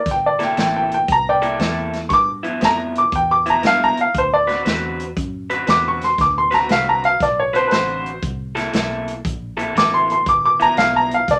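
Electric blues shuffle at 118 BPM in G mixolydian, soulful and rollicking, with swung eighths, cut from a longer piece and moving through C13, G6 and D13 chords. A woody, up-front upright piano with short sustain leads the accompaniment from 0.0 seconds, sitting clearly above the rest, while a natural-sounding big-band drum kit swings on hi-hat, a punchy kick and a medium-tuned snare. A picked electric guitar through a small old amp enters at 0.4 seconds with a dark, slightly broken-up, lo-fi riff, and a round, foam-muted fingered bass stays low and quiet underneath, all in a light reverb.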